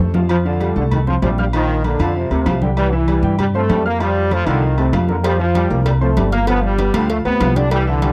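Joyful and festive, this salsa excerpt opens on a drum fill before a bright trombone section takes the melody up front, shadowed by a tight, mellower trombone section in the background. A woody, thumpy upright bass sits forward beneath a clear, worn grand piano with short sustain, while ringing congas and metal-shelled timbales with agogo bells keep the groove. Tight, high-tuned bongos and cowbell appear briefly at the start and return from 5.2 seconds, all captured in a dry, close 1970s-style studio sound.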